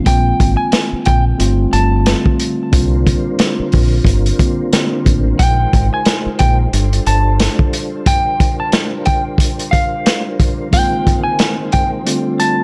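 Bathed in studio reverb, this excerpt of confident, warm boom-bap hip-hop moves at 90 BPM with a swung 16th feel: a muffled, lo-fi vintage drum kit with a punchy kick and a medium-tuned snare sits up front beside a deep, round fingered dub bass; a dark, clean electric guitar carries a high melody through spring reverb and delay; a mellow tine electric piano with cassette-tape colour plays accompanying sus chords, dropping out at 5.4 s and returning at 10.7 s; and from 2.7 s a soft, flute-like tonewheel organ with key click, chorus vibrato and a slow rotary speaker holds sustained chords.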